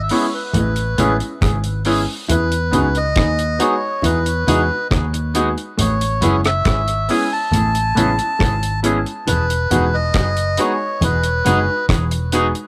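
Lovers rock reggae with a sweet, smooth mood, heard in a short cut from a longer piece recorded at home on cassette with moderate booth ambience. A reedy, breathy melodica carries the melody up front over a round, foam-muted electric bass and a dry reggae drum kit with a tight kick, hi-hat and rim click, while a worn baby grand piano with long sustain plays accompaniment over Amaj9 and Emaj7 chords. A clean, twangy electric guitar adds phased stabs, a dark, compressed electric guitar plays a riff in the background, and low-tuned congas sit very quiet beneath, with tape echo on the melodica and analog delay on the piano, the stabbing guitar and the drums.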